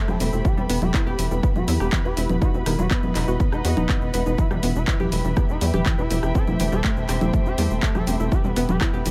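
A punchy, tape-warmed electronic kick anchors this dark, driving melodic techno excerpt at 122 BPM in E harmonic minor, landing up front from 0.5 s alongside a tight sawtooth sequencer bass that pumps with sidechain, a layered house kit of congas, handclaps, hi-hat, rim click and shaker, a warbling lo-fi pluck spinning chorused arpeggios through tape echo, a smooth portamento lead with vibrato and delay sitting in the background, a veiled con sordino string section, and a very quiet, deep detuned pad holding chords over Em, B/E and Am7/E in a dry, close mix.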